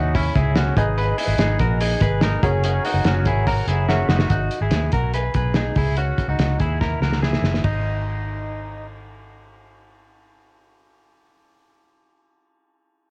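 A clean, twangy electric guitar, recorded direct and thickened with tube saturation, lush chorus, tape echo and cassette tape, picks out arpeggios up front in this restless, wistful jangly indie pop excerpt in G# minor at 144 BPM, moving through C#m, G#m and F#add9. A worn, woody, slightly detuned upright piano with audible action noise accompanies only until 4.3 seconds, while a muffled, cloth-damped drum kit with a fat snare and dark cymbals plays from 0.1 to 7.7 seconds, adding fills. A round, foam-muted fingered bass carries on alone to 12.0 seconds, and the whole home cassette recording sits in light reverb.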